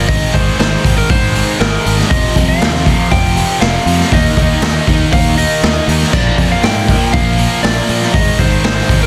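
A raw garage drum kit sits up front in this heavy, menacing hard rock excerpt. Its boomy kick, medium-tuned snare, hi-hat and crash cymbal carry a saturated, gritty tone with a rolled-off top in a small room. A growly fingered electric bass, direct and amped, runs underneath throughout, while three picked guitars grind out the riff in the background: a tight, bright distorted part, a cranked stack guitar colored by overdrive and phaser, and a very quiet, double-tracked sludgy one. Above them, a lightly driven lead guitar carries the melody in a slightly broken-up, compressed voice with slapback echo. The straight 4/4 groove moves through Ab, F5, Eb5, Bb and back to Ab, framed by light reverb and a dense, heavily limited modern master.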